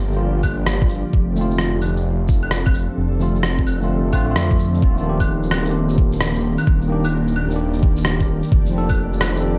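An overdriven, knocking electronic kick sits up front in this rainy, nocturnal future garage excerpt with a swung 16th-note feel, alongside a menacing, saturated detuned saw bass that evolves through filter swells and pumps under sidechain. Behind them, an ethereal, airy pad with ensemble chorus and built-in reverb holds mellow chords in the background, while a clean tine electric piano through a combo amp drifts in diffuse ambient delay, and muffled, tape-toned shaker, claves and rim click add a roomy tick. Vinyl crackle runs throughout as the harmony moves from Gm7 to F6, then shifts to Ebmaj7 at 4.8 seconds before returning to F6.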